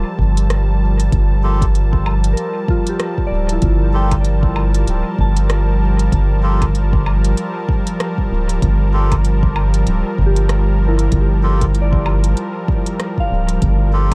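A swung 4/4 pulse at 96 BPM carries this deep, spacious ambient dub in G dorian. A tape-toned, layered electronic kick sits in the background from 0.2 s, and a smooth-hatted electronic kit of hi-hat, rim click and woodblock trails dub echo. Up front, a round, wave-folded analog bass holds the low end beneath a detuned sawtooth pad sustaining a Gm9 chord through chorus; a reedy, nasal melodica adds stabs from 1.4 s, gritty with 12-bit sampler texture and echo, and from 2.3 s a pure, warbling FM bell spins mellow arpeggios through chorus and tape echo, inside a dark, warm digital ambience.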